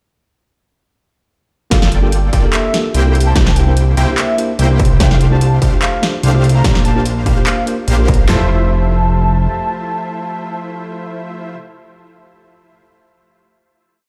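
A fat, thick analog bass sits up front in this lush, bright future bass piece at 146 BPM in F major, following the chord rhythm with sidechain pumping over a half-time feel with light swing. From 1.7 seconds, two layered dubstep kits drive the drop. One carries a distorted kick, toms and a huge snare, and the other brings metallic hat rolls and claps. A punchy, detuned supersaw stab throbs in tempo, a bell-like tine electric piano plays dotted, rootless chords through dub echo, and a velvety, wave-folded lead carries a repeating riff melody with chorus, vibrato and digital delay. The drums stop around 8.4 seconds as the music settles on a final Fmaj7, sounding as if played on a big sound system in a bare room.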